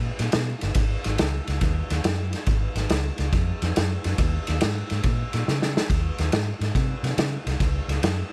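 A dry, gritty recording carries this laid-back, swung electric blues shuffle excerpt, where a round, amped, foam-muted vintage fingered electric bass sounds first, joined at 0.2 seconds by an up-front vintage drum kit in a small, pumping room, with punchy kick, medium-tuned snare and dark ride cymbal under a rolled-off top, before a drum fill at 5.5 seconds.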